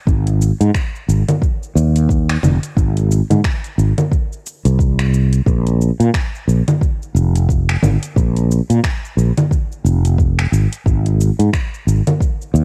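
Organic downtempo at 89 BPM in 4/4 with a lazy 16th-note swing and a peaceful, warm mood, this short cut from a longer piece runs on a growly, punchy fretless electric bass sitting up front with sidechain pumping, a deep, up-front electronic kick with cassette-tape coloring, and a produced afro-pop kit of congas, finger snaps, metallic hi-hats and shaker that carries the same tape grit, all captured as a dry, intimate home cassette recording.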